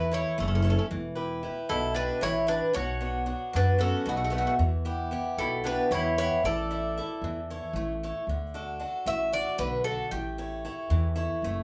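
A Greek folk tune starts at once with bouzouki, mandolin, archtop guitar and upright bass playing together in D major. It moves at a lively 228 BPM counted in eighths, in a straight 7/8 metre, with a sunny, warm mood. The bouzouki carries the melody up front with a metallic, double-strung tone and some octave-doubled strings, while the mellow, round mandolin adds a second line before dropping out at 7.7 seconds. The picked archtop guitar sits up front with a boxy, bright accompaniment, and the pizzicato upright bass gives a woody, thumpy low end on steel strings. The band sounds as if it is playing live in one small room, with a wet studio reverb around it, and the harmony moves through A, Em and Bm before settling onto D and A in a second section from 8.3 seconds, where the bouzouki carries on until 11.1 seconds in this fragment of a longer piece.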